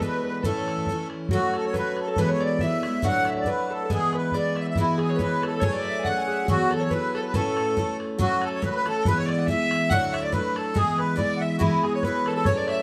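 Celtic folk polka at 140 BPM in 2/4 with a light swing, bright and lively, built on A, F#m, E and D-based chords, and cut from a longer piece. A reedy, sweet accordion with light tremolo tuning carries the melody close-miked and up front, while a ringing fingerpicked Celtic harp drops out between 9.5 and 11.6 seconds and a rich, smooth-topped bowed fiddle with light vibrato rejoins at 4.8 seconds. Beneath them a full-bodied jumbo steel-string guitar with fresh strings and audible finger squeak picks the accompaniment, and a damped, tight bodhran keeps time, all heard as a band playing live in one room with moderate studio reverb.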